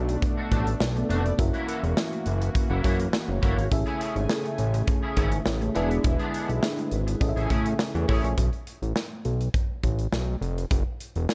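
A lush, warbling FM electric piano with a soft pad layer, a brassy background pad and a fat, saturated analog bass open this late-night, funky early-eighties boogie funk fragment, joined almost at once by punchy, up-front studio drums and a twangy, slightly broken-up guitar riff. From 1.0 seconds a round, dark synth brass adds a second line, and chorus colours the keys, pads, brass and guitar over a Bm7 to F#7, Amaj7 and E7 progression. At 8.4 seconds the keys, pads, brass and guitar fall away, leaving the bass and drums over an F to Esus2 change until the cut at 11.3 seconds, all in a dark, small-room production.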